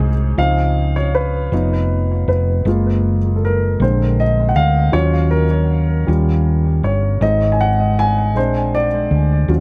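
A warm upright piano with audible action noise and a woody, intimate character takes the lead, soloing from 0.4 seconds with a dub echo trailing its chords through Dbmaj7, Cb, Gbmaj7, Bb7, Ebm7, Eb9, Ab and back to Bb7. Beneath it, a hollow-body short-scale electric bass, played with the fingers, sits up front with a dark, round, punchy tone. This slow gospel excerpt in Db major moves in a straight 6/8 at 53 BPM, set in light reverb and small room ambience, and its mood is jubilant and uplifting.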